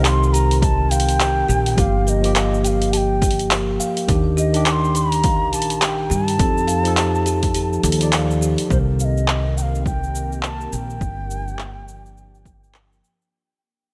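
An airy bamboo bansuri carries the melody with expressive vibrato and a digital delay over this hypnotic, earthy organic downtempo excerpt in G minor at 104 BPM, swung on the 16ths. Beneath it, a woody, thumpy pizzicato upright bass sits up front, a ringing kalimba plays delayed arpeggios, and a clean tine electric piano comps with pumping and delay, all over an overdriven deep house kit of cabasa, handclaps and hi-hat, anchored by a punchy layered electronic kick that drops out at 7.5 seconds. At 8.7 seconds the fade-out begins, and at 9.3 seconds a faint, warbly, nostalgic lo-fi pad of detuned chords with chorus and pumping arrives, while the chords move through Cm7, Gm7, Ebmaj7 and F7.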